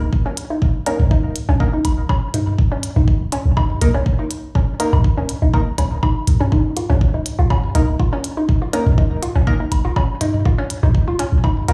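A straight 4/4 pulse at 122 BPM drives this cool, hypnotic minimal techno cut from a longer piece, where a deep, punchy sine sub bass with a pitch-drop attack pumps under the sidechain from the start, an up-front, tape-tinged electronic kick and clicky hi-hats settle in, a hollow, bouncy detuned square-wave pluck riff shimmers through chorus, phaser and digital delay, a mellow wave-folded organ-like stab drifts in tape echo from 0.9 seconds, and analog toms and woodblock echo in a large room, all under light reverb and a bare-room sound-system sheen.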